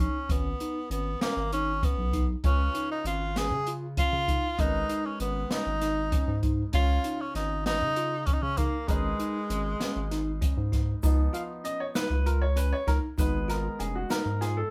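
A clear tenor saxophone with vibrato and a soft attack opens this brooding, driving progressive instrumental, joined at once by bell-like tine electric piano arpeggios and a round, deep analog bass, with an open jazz drum kit entering at 0.3 seconds. The band plays in 7/8 at 195 BPM counted in eighths, with a straight feel, in G# dorian, moving between G#m, C#7 and G#madd9 chords. A baby grand piano with an intimate, natural sound and audible action noise adds accompaniment from 2.4 seconds, while the saxophone carries the melody until 10.4 seconds. At 11.0 seconds the piece shifts into a new section where the grand piano takes a solo, and a grainy egg shaker sits distant in the background. The airy drum kit, with its boomy kick and medium-tuned snare, stays up front alongside the bass and saxophone, and the whole band sounds like it is playing live in one room with moderate studio reverb, cut from a longer piece.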